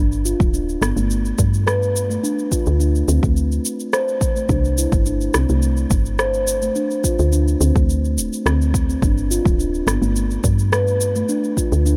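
Organic downtempo at 106 BPM in D dorian, this hypnotic, meditative fragment of a longer piece sets ringing, pure steel tongue drum arpeggios struck with soft rubber mallets and trailed by delay over a woody, round FM bass with tube saturation and sidechain pumping, while an electronic shaker and rim click enter at 0.1 seconds and a deep, up-front electronic kick drum at 0.4 seconds, all in a dry sound as the chords move through G, D7(no3), C5, D7(no3) and back to G before settling on Dm.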